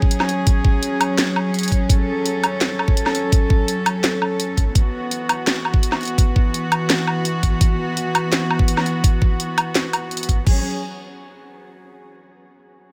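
Dark and cinematic, this excerpt of half-time drum and bass at 168 BPM in F# minor sets a close, floating cello section playing soft-attack sustained chords from F#madd9 to E5, pumping under sidechain, beneath an up-front knocking electronic kick and a layered kit of cracking snare, bright hats, crash cymbal and woodblock, all in light reverb until the cellos hold on alone to an F#sus2 at 10.5 seconds.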